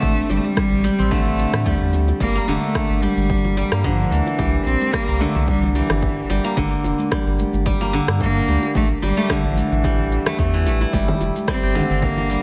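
Warm and hypnotic, this organic downtempo piece with a light sixteenth-note swing sets a biting, intense bowed cello melody with vibrato over silvery, fingerpicked steel-string zither arpeggios that ring up front, both trailed by delay, while a deep, round sine sub bass pumps beneath a punchy, overdriven electronic kick, layered overdriven electronic shaker, rim click and congas, and very quiet, close and dry acoustic congas and bongos struck with hard hands, the whole placed in a small room with light reverb.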